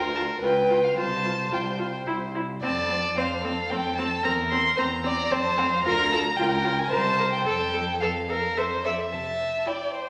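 A quick, graceful and spirited classical-period string quartet movement in F major at 110 BPM in 3/4: this short excerpt sets a focused, vibrato-rich first violin melody above a dark, woody second violin that sits up front, a smooth, distant viola accompaniment and a rich cello bass with soft attacks and expressive portamento, each part bowed by a single player in a wet recital hall reverb that lingers for 1.6 seconds.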